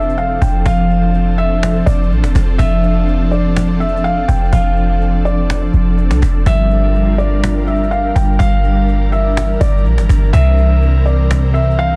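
This atmospheric cloud-rap hip hop excerpt floats along at 124 BPM in a half-time 4/4 feel, its dreamy mood settled in F major over a short progression of F6, Gm7 and C7. A felt-muted upright piano carries the melody in a soft, intimate register between D5 and G5, its thick-felt tone dulled by a low-pass filter and trailed by tape echo. Beneath it, an ethereal, warbling pad of detuned sawtooth and triangle voices holds sustained chords with a slow attack and long release, thickened by ensemble chorus and its own reverb. Glassy digital keys trace arpeggios low in the background, filtered and chorused with tape echo, while a deep, boomy 808-style bass sits up front as the loudest part, its sine body and noise layer giving a mellow, decaying punch. A snappy cajon played with soft hands adds a light pulse, roughened by vintage 12-bit sampler grit, all set in a small room ambience under a dense, heavily limited modern master.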